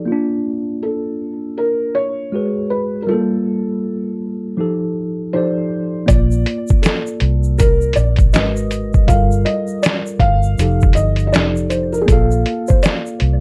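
A worn, slightly out-of-tune tine electric piano opens this mellow, dreamy lo-fi hip hop excerpt with filtered jazzy chords, joined at 0.8 seconds by a felt-muted upright piano melody with audible action noise, before a muffled, tape-warm sampler drum kit with a thumpy kick, a round foam-muted electric bass and a grainy egg shaker in the background arrive at 6.1 seconds under light reverb and a dark production.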